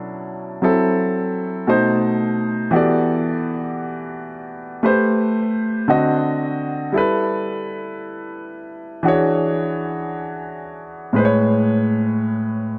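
R&B in a slow 6/8 at 57 BPM, this short passage cut from a longer piece carries a yearning, late-night mood. A solo grand piano, natural and up front with a touch of tape echo, plays alone for the full 12.8 seconds across a range from A2 to Eb5, moving through lush extended chords from Bm11 through Em11 and G69 before settling on Amaj9 at 11.1 seconds. A moderate echo-chamber reverb with a 2.2-second decay surrounds the instrument and lends the room a soft, lingering glow.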